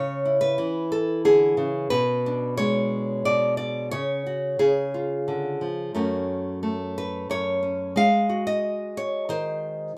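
A fingerpicked nylon-string guitar plays alone, bright and small-bodied with fresh strings, sitting up front in light reverb. This reflective, melancholic folk excerpt moves at 90 BPM in 3/4, its harmony turning from C#m through a C#sus4 that resolves to C#, then to F#m and G#7 by 8.0 seconds.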